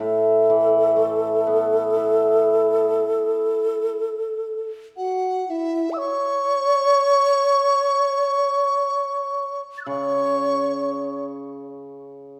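Chinese traditional chamber music in a pastoral, festive mood, this rubato excerpt sets an airy, end-blown bamboo xiao melody with gentle vibrato over a shimmering, ringing hammered dulcimer accompaniment that drops out at 3.9 seconds and returns at 9.9 seconds, while a pure, buzzing dizi adds a high second line from 5.0 seconds, with all three parts up front in a moderate stage reverb.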